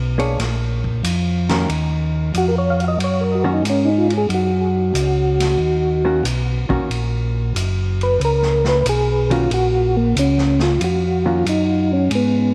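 A swung 4/4 groove at 92 BPM drives this late-night, smoky soul jazz organ trio excerpt in Eb minor, anchored by a smooth tonewheel organ bass line up front, with key click and chorus vibrato through a stopped rotary speaker. A dark, compressed hollow-body electric guitar supplies clean, fingered accompaniment, while a distant, roomy drum kit with dark cymbals, a medium-tuned snare and a boomy kick sits in the background. At 2.4 s a mellow, flute-like percussive organ enters with the solo melody, colored by second-harmonic percussion, a slow rotary speaker and tape echo, in a small room with light reverb.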